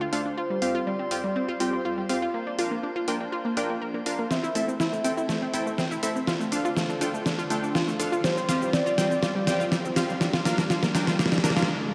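An overdriven, up-front pop drum kit with a deep snare, hi-hat and cabasa drives this dreamy, emotional progressive house build-up at 122 BPM, rolling into a fill from 4.3 seconds before the break at 11.7 seconds. Above it, a velvety synth lead with vibrato carries a melody under a filter sweep, while a bright, detuned analog pluck spins arpeggios and punchy, low-pass-filtered supersaw stabs with delay cut through over Fsus2, Bb, Am and Dm. Underneath sit a very quiet lush supersaw pad, a round, deep analog bass, a glassy texture of drifting overtones and a faint riser entering at 6.0 seconds, all bathed in a dark, warm hall reverb.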